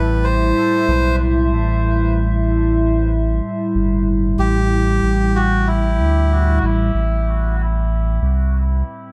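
A deep, round analog bass sits up front with tube saturation, its dark, sustained tone carrying this meditative, hazy piece of ambient dub cut from a longer work. Above it, a reedy, breathy melodica drifts through a dub echo until 6.6 seconds, while a warbling, nostalgic tape-like pad with chorus and its own reverb holds mellow, lo-fi chords that settle onto an Am9 at 6.9 seconds. A moderate echo-chamber reverb wraps the parts in a soft haze, and the pad lingers alone briefly after the bass stops at 8.8 seconds.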